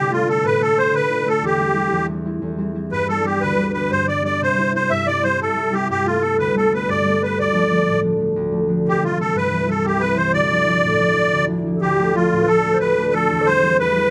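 Celtic folk in a lilting 9/8 with a straight feel, this short excerpt from a longer piece sounds dark yet lively and spirited. A musette accordion carries the melody up front, its reedy, wet-tuned voice shimmering through the tune. Beneath it, a concert harp plays the accompaniment, also close at hand, with warm, thumb-plucked notes that ring out from deep bass into the middle register. The harmony moves through minor and major chords such as Dm, C/E, G and Gadd9, passes through a Dmadd9 colour, and closes on C/E. At 11.7 seconds, as the opening section begins again, a very quiet baroque flute adds an airy second line with a crisp attack and a straight wooden tone. The recording is close and detailed, with little reverb, so each part sounds intimate and clear.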